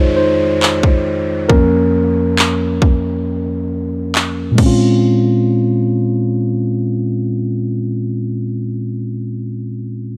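Contemporary R&B with a sensual, moody feel, in which a mellow, clean tine electric piano plays up front under a low-pass filter sweep through the first 5.0 seconds, an electronic downlifter sits quietly beneath, and an up-front trap kit of crash cymbal, handclaps and a hard-clipped, tape-tinged kick plays from 0.6 seconds with the kick muted from 3.3 seconds, all in a dry, gritty hardware sound over chords moving from Fm7 to Db6/F and settling on Bbm9 in this short excerpt.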